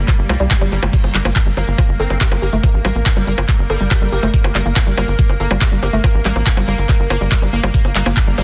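Psychedelic trance at 141 BPM in G minor, this intense, psychedelic clip sits on a single G minor chord throughout its 8.4 seconds. A tight, punchy sequencer bass drives the low end with a nasal, sawtooth bite and fast, decaying plucks, up front beside a knocking, tape-warm electronic kick. A layered techno kit adds smooth hi-hats, bongos, handclaps and crash cymbal, while a very quiet, grainy egg shaker and a brief electronic swell near the start fill in the edges. From 0.3 seconds a woody, dark wave-folded pluck carries the riff with chorus, tape echo and sidechain pumping, over a bright, detuned gated pad of sustained chords that pulses in tempo with its own reverb. Between 2.0 and 4.3 seconds a metallic, aggressive wobble bass slips in at the back, distorted, high-passed and echoed. The sound is dry and dense, with a heavily limited, modern master.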